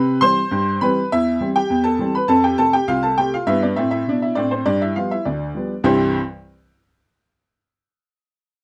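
Light reverb and a dark production frame this cheerful, playful ragtime snippet in C major at 101 BPM in a straight 2/4, where a clear, woody, slightly detuned upright piano sits up front as the solo voice from 0.0 to 6.2 seconds, spanning C2 to C6 in a tuning of A4 = 442 Hz and moving through C, C/E, F, C/G and G7 before landing back on C at 5.9 seconds as the piece turns to a new section.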